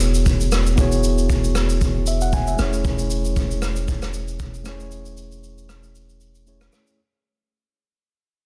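Warm and relaxed, this amapiano excerpt fades out across its full 7 seconds, with a mellow, clean tine electric piano moving from E69 to Amaj7/E over a lightly swung sixteenth-note feel. A vintage brush drum kit supplies a punchy kick, rim click and shaker with a roomy, rolled-off top and soft clipping on the snare, while a deep sine sub bass with a pitch-drop attack holds E1 until 6.7 seconds. Studio reverb surrounds the parts, and the mix has a dense, heavily limited modern master.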